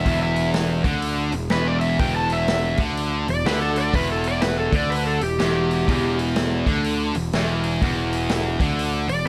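An overdriven slide guitar carries the solo melody in this heavy, brooding blues rock and southern rock excerpt in E minor at 124 BPM with a swung 4/4 feel, dropping out at 6.2 seconds before a brief return at 9.1 seconds, over a bright, double-tracked distorted guitar riff up front, a dark, round fuzz bass, and a vintage drum kit with a punchy kick and rolled-off top, all set in a small room with light reverb.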